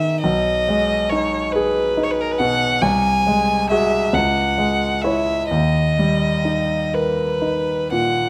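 A romantic classical duo for violin and concert grand piano, elegiac and solemn, moves in a slow, rubato 6/8 through this brief passage cut from a longer piece. The bowed violin carries the melody up front with a smooth, even vibrato, while the polished piano accompanies with deep bass and short sustain, the harmony shifting through G#m/B, G#7/B#, C#m and D#. Close, detailed microphones keep both instruments present within a moderate recital hall reverb.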